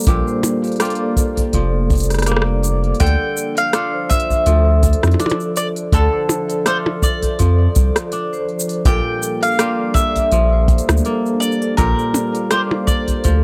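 Wistful and delicate, this folktronica excerpt moves at 82 BPM in a lightly swung 4/4, with fingerpicked kora arpeggios ringing crisply against a warbling, detuned tape-like pad with chorus and a ringing vibraphone second line with fast motor vibrato, both kora and vibraphone carrying tape echo. Underneath, a deep, round sine sub bass sits up front beside a punchy brushed kick, while a minimal electronic kit adds clicky overdriven hats, rim clicks, shaker and percussion blips. At 3.0 seconds a bright, double-strung mandolin enters with the melody, all within a dry, close 1970s-style studio sound as the harmony moves from Bb6 to Dm and back.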